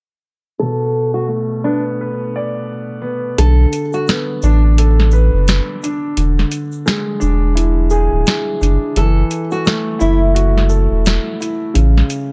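A swung boom-bap groove in 4/4 settles in at 3.4 seconds, when a booming, tape-warm analog drum machine arrives with a crisp snare, metallic hi-hats and shaker, its kick muted throughout, alongside a very quiet, grainy tube shaker. This moody, reflective hip-hop cut opens at 0.6 seconds with a dark, mellow grand piano carrying the accompaniment up front, its audible action noise lending a vintage, intimate feel, while a filter sweep colours the opening bars. A fingerpicked nylon-string guitar plays the classical-toned melody with delay, dropping out and then returning briefly at 9.0 seconds. From the drums' entry, a round, sine-like sub bass with a fast attack and sustained notes sits deep and prominent beneath the piano. The chords move from Bm7 through E7 and F#m7 to A, and the dry, dark production keeps reverb to a minimum in this excerpt from a longer piece.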